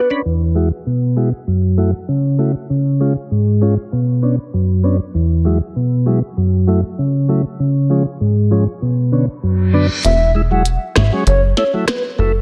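A smooth tonewheel organ with key click and a slow rotary speaker carries this tough, sultry dancehall excerpt at 98 BPM through a long filter sweep on Eadd9, F#m7, C# and Bmadd9, until a reverse cymbal at 9.6 seconds ushers in a punchy, plucky analog bass, a clicky minimal drum kit with a tiny soft-clipped snare, and the return of a hollow, woody clarinet-like synth lead with chorus, vibrato and tape echo at 10.0 seconds, all under light digital ambience and a dense, heavily limited master.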